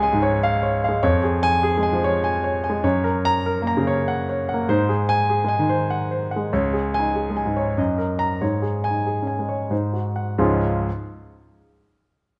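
A classical virtuoso piano study in D-flat major and 3/4, this brilliant, sparkling fragment of a longer piece moves with a free rubato feel between 87 and 100 BPM, tuned to A4 = 439 Hz. A dark, mellow grand piano plays alone and up front from 0.0 to 10.9 seconds, spanning Db2 to Bb5 over harmony that circles from Db through Gb and Ab7 and home again to Db. The tempo slows from 5.6 to 10.4 seconds, and a moderate recital hall reverb lends the sound a sense of space.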